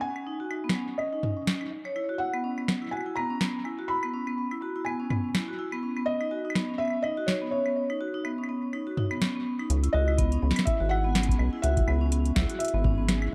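Cerebral and eerie, this swung IDM excerpt opens with a soft, felt-muted upright piano melody and dark, ringing vibraphone arpeggios through low-pass filtering and analog delay over an up-front electro drum machine of punchy snare, metallic hats, claves and toms, before a rubbery, saturated acid bass enters at 9.7 seconds, a deep electronic kick at 10.2 seconds and a very quiet reversed, granular swelling texture at 10.4 seconds, all set in an echo-heavy mix with spring reverb.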